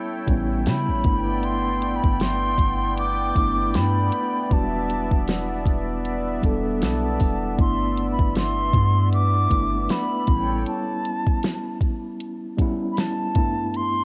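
Smooth and tender, this contemporary R&B piece, cut from a longer work, moves with a relaxed sixteenth-note swing over chords that drift between A7, G6 and Em7. A mellow tine electric piano carries the accompaniment throughout with a clean tone heard as if through its built-in speakers. Above it, a detuned sawtooth analog pad holds sustained, warbling chords with chorus and sidechain pumping. A soft electronic drum kit, placed up front with a gentle kick, fat snare and hi-hat, arrives at 0.3 seconds alongside a deep, round, dark 808-style bass. From 0.7 seconds a silver concert flute sings the airy, expressive melody with vibrato and tongued notes, colored by cassette tape and analog delay, while the pad and bass fall away near 10.7 seconds. A light reverb and the intimate feel of a home cassette recording give the whole piece a cozy, vintage glow.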